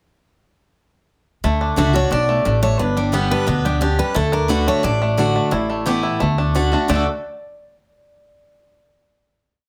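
A bright, full-bodied steel-string acoustic guitar carries a fiddle tune in running eighth notes from 1.8 s in this short, driving and joyful bluegrass piece in D major at 176 BPM. Around it, a twangy banjo plays three-finger rolls with fingerpicks, a boxy archtop guitar alternates bass and strum with bass runs and audible finger squeak, and a woody upright bass holds a two-beat root-and-fifth pattern with walk-ups. The harmony moves through D, G and Asus2 before settling on a final D chord at 6.9 s, all captured by close, detailed microphones with light reverb.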